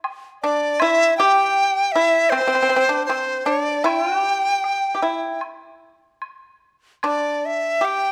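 Chinese traditional chamber music with a graceful, festive, rubato feel, cut from a longer piece, where a dark, close woodblock sounds from 0.0 to 7.2 seconds while, from 0.4 seconds, an up-front bamboo dizi carries the melody with a breathy, buzzing-membrane tone, soft attack and vibrato, over a fingerpicked pipa second line that is percussive and dry, all set in a moderate recital-hall reverb.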